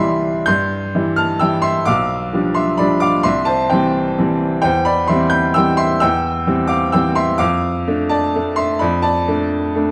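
Elegant and playful, this short classical piano waltz is cut from a longer piece and moves in 3/4 at about 130 BPM, with uneven beats and a free, rubato feel. A single upright piano carries everything on its own, sounding brilliant, woody and open as it sits up front and spans from B1 to G6. The harmony settles into C major from 4.6 s, passing through chords such as G7/B, C/E and Dm/F along the way. A moderate recital hall reverb gives the instrument some air, while the overall production leans dark and warm, offsetting the piano's own sparkle. The fragment ends at 9.9 s, still within its opening section.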